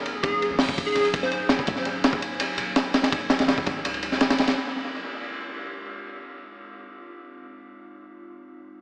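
A warbling, detuned tape-like pad with chorus and reverb opens this frenetic, nostalgic drum and bass excerpt, holding Ebm7 in the background over a deep, decaying sine 808 bass, as a crunchy, gritty breakbeat kit with a punchy kick, high-tuned snare and dub echo sits up front. A bright, plucky unison lead with cassette-tape colour and dub echo flashes a catchy phrase until 1.4 s, and the kick drops out from 3.8 s. At 4.6 s the drums and bass stop, leaving the pad alone on Fm7 under a filter sweep in an echo-heavy, small-speaker mix with spring reverb.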